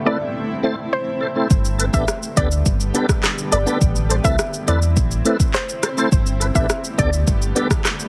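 Sultry and tough, this dancehall excerpt moves at 104 BPM in A minor, with a cloudy, blurred granular pad pumping under a soft, round pluck melody set in chorus and delay and a lightly overdriven tonewheel organ carrying key click and a slow rotary speaker up front. At 1.5 seconds a deep sine sub bass with an octave layer arrives alongside an electronic afro-pop kit of deep kick, smooth hats, handclaps, rim click and shaker, its tape-tinged sound sitting forward. The chords alternate between Am and Gadd9, and the dry, heavily compressed mix has a radio-like punch.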